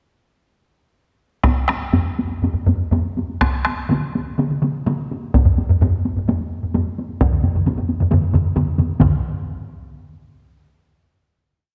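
Japanese traditional taiko drum ensemble music in 4/4 with a straight feel, this short, complete piece is driving and powerful, pushing from about 121 to 144 BPM as it speeds up throughout. A solo taiko drum part, struck with heavy sticks and heard close and dry, lays down a repeating pattern from 1.4 seconds, alongside a taiko ensemble playing a repeating pattern with hard sticks in a small-room sound. Two more ensemble parts, one with heavy sticks and one with hard sticks, both close, dry and up front, fill in with taiko phrases, the second of them joining at 3.4 seconds. The acoustic ensemble drums are placed up front, set within a scoring-stage reverb with a 2.0-second decay. The main section runs until a final hit at 9.0 seconds closes the piece.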